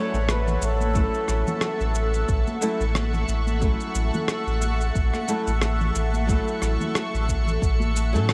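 This sunny, smooth sunset chillout fragment in A major at 90 BPM, with a gentle 16th-note swing, opens on an A6 chord as a close-miked flugelhorn with light vibrato sings a brief tape-echoed melody that ends at 2.6 seconds. Beneath it, a fingerpicked flamenco guitar with delay and a shimmering, ethereal pad, chorused, phased and grainy with vintage sampler grit, carry on throughout, joined by a round, up-front sine sub bass, gritty overdriven electronic shaker and rim click, and bright, high-tuned congas tucked in the background. A deep, layered electronic kick enters at 1.0 second, and the whole dreamy mix is soaked in a huge ambient reverb.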